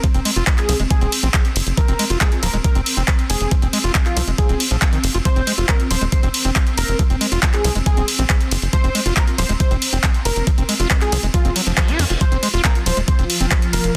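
Psychedelic trance at 138 BPM in F phrygian, this intense excerpt drives on an overdriven knocking kick and an up-front layered kit of handclaps, bright hi-hats and ride cymbal, under a punchy, dark sawtooth sequencer bass, a squelchy, screaming distorted acid riff with resonant filter sweeps, chorus and digital delay, a thick detuned unison lead entering at 0.6 s with phaser and dub echo, and a morphing wavetable pad in the background whose ring-modulated chords carry ensemble chorus, phaser and 12-bit sampler grit, while sidechain pumping moves the pad, acid line and lead, and a reverse cymbal sweeps in at 11.6 s, all in a dry, dense, heavily limited mix.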